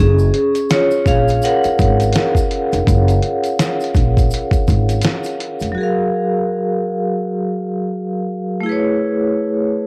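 A bright, ringing vibraphone played with medium hard mallets leads this cosy, mellow lo-fi hip hop fragment, taking a solo through the opening section with a slow motor vibrato, a close, dry, up-front sound and a cassette-tape coloring. The tempo sits at 83 BPM in 4/4 with a lazy swing on the sixteenths, in F# major, starting on an F#maj9 chord. Beneath it, a woody, growly pizzicato upright bass and a dusty soul sampler-style drum kit sit up front. The drums are compressed and overdriven with vintage 12-bit sampler grit, pairing a thumpy kick and fat snare with hi-hat, while a grainy tube shaker stays in the background. The bass and shaker drop out at 5.7 seconds and the drums at 5.8 seconds, leaving the vibraphone alone for the second section, where the harmony shifts to Amaj9 at 8.7 seconds. A moderate spring reverb and homespun cassette recording give this passage, cut from a longer piece, a soft, lived-in glow.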